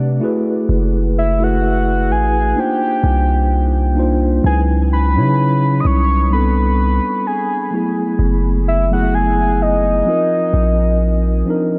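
Soaked in a huge ambient reverb, this dreamy, moody slice of contemporary R&B drifts at 64 BPM with a gentle 16th-note swing and a feeling of longing, moving through minor eleventh chords from F#m11 to Cm11, C#m11 and Am11. A soft, round, octave-layered synth lead carries the melody up front, its dark tone thickened by a sub octave, chorus, vibrato and tape echo, while a mellow, clean tine electric piano supplies the accompaniment. Underneath, a deep, sine-like 808-style bass holds long, decaying notes with a fast attack.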